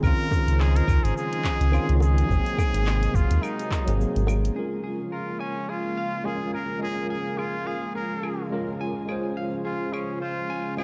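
A breathy, nasal trumpet with a straight mute carries the melody with vibrato through this smooth, wistful sunset chillout excerpt in Bb minor at 106 BPM, with a gentle swing on the sixteenths. Beneath it sit a worn, slightly out-of-tune tine electric piano with light overdrive, a thick, warbling pad, and a round, deep analog bass that sits up front until it drops out at 4.5 seconds. Electronic kick, filtered deep house percussion with cabasa, claves, handclaps and hi-hat, and tight high-tuned bongos fill out the groove before a clean, hollow-bodied electric guitar enters with arpeggios at 4.6 seconds, all within a dark production with delay and shimmer reverb on the lead parts.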